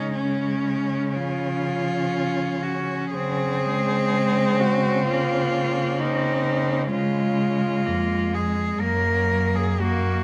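Captured with close, detailed microphones in a moderate recital-hall reverb, this lyrical classical passage for cello ensemble unfolds in a rubato 4/4, with an up-front, clear bowed cello carrying the melody with vibrato above a focused, rich second line and accompaniment, while a smooth-topped bass cello, also up front, anchors the warm harmony from start to finish.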